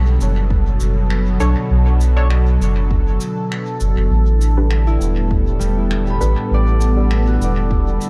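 A smooth, detuned sawtooth pad with chorus holds sustained chords over a deep, round sub bass that sits up front, while a ringing, fingerpicked concert harp traces arpeggios through analog delay before dropping out and returning at 4.9 seconds. This hazy, spacious ambient dub piece moves at 100 BPM in B minor with a light swing, shifting from Bm7 to A7sus4. An overdriven, layered electronic kick, dub-echoed cabasa and finger snaps with a rolled-off top, and a muted, evolving filtered chord stab with chorus and dub echo fill out the groove, all set in a small room ambience with light reverb.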